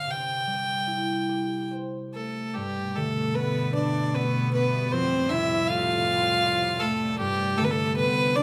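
A clear, slightly nasal fiddle with light vibrato sits up front, carrying the melody of this tender, pastoral Celtic slow air in 3/4, which moves with a rubato feel at 68-80 BPM in G mixolydian. Ringing, fingerpicked concert harp accompanies from the start, a smooth, sul tasto cello adds a second line from 2.1 seconds, and a soft, organ-like pad with ensemble chorus holds sustained chords in the background from 2.9 seconds. The players share a wet recital hall, while the harmony drifts from C through Gadd9 and Fadd9 to an unresolved Gsus4 as the excerpt is cut off.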